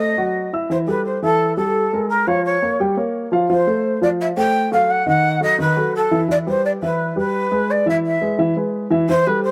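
A straight, even 4/4 pulse drives this brisk Latin passage, cut from a longer piece and carrying a festive, joyful mood. An airy bamboo shakuhachi carries the melody up front, its warm, end-blown tone unsteady and marked by tongued attacks, a breathy chiff and vibrato. Beneath it, a baby grand piano supplies mellow, dark-toned accompaniment that spans a broad register, also placed close to the listener. Both parts play together from the first moment to the end at 9.5 seconds. The harmony moves through colorful changes such as F#m7, Bbm7, F, B7 and Em before settling on E. Close, detailed microphones and a light reverb give the recording an intimate, clear presence.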